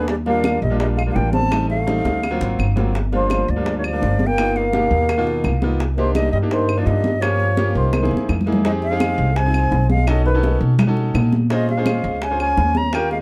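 A growly, thumpy pizzicato upright bass sits up front in this driving, sultry slice of Afro-Cuban jazz, cut from a longer piece and moving at 168 BPM in a straight 4/4. A reedy, airy concert flute carries the melody with a straight, tongued tone. Behind it, a raspy, gritty trombone with a soft attack and a slapback echo plays a second line. A clear concert grand piano with deep bass supplies smooth accompaniment over chords such as Ebmaj7, D7alt and Cm7. High-tuned congas, round, low-tuned bongos with a compressed, saturated edge, and woody claves fill out the percussion from the back of the mix. The key shifts from C minor to F minor at 8.7 seconds, all within a dark production touched by light reverb.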